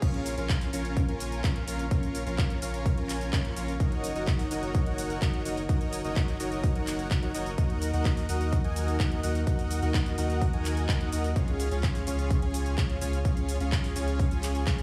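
An overdriven, punchy electronic kick sits up front in this euphoric, emotional festival progressive house drop in Bb minor at 127 BPM, cut from a longer piece, joined throughout by a huge, detuned supersaw riff with sidechain pumping and analog delay over a deep, saturated sub bass that pumps along with it. A big-room dance kit adds a punchy snare, metallic hats, handclaps, shaker and crash cymbal, closing with a drum fill at 14.7 seconds, while the chords move from Bbm through Gb6 and Ebm to Db. The dreamy mix is soaked in a lush hall reverb.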